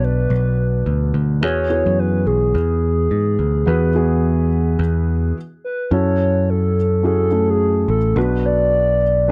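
Piano-driven pop at 107 BPM with a gentle sixteenth-note swing and a hopeful mood, cut from a longer piece, where a hollow, woody clarinet-like synth lead with chorus, vibrato and tape echo carries the melody up front over a dark, mellow baby grand whose action noise and long sustain give an intimate feel, and an amped, direct picked electric bass that sits forward, as Bm and Eadd9 give way after a brief stop at 5.4 seconds to F#m7 and back to Bm in a dry, close 1970s-style studio sound with light reverb.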